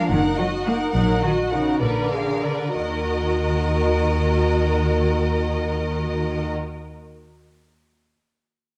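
Magical and quirky, this short passage from a longer cinematic film cue has a playful, whimsical air, moving in a straight 6/8 for a bowed string ensemble. A clear, focused violin section carries the melody in a high, narrow register, while a second violin section, soft in attack and somewhat distant, adds a lush, expressive line beneath it. Smooth, even violas fill in the accompaniment, and the cellos sit in the background with expressive portamento as the double basses, entering at 0.1 seconds, hold the low end up front with a smooth top. The opening phrase slows down across its first 2.8 seconds, then the harmony settles onto a minor chord as a second section carries on to the close. Vibrato colours every section, and a moderate scoring-stage reverb gives the whole a dark, warm production.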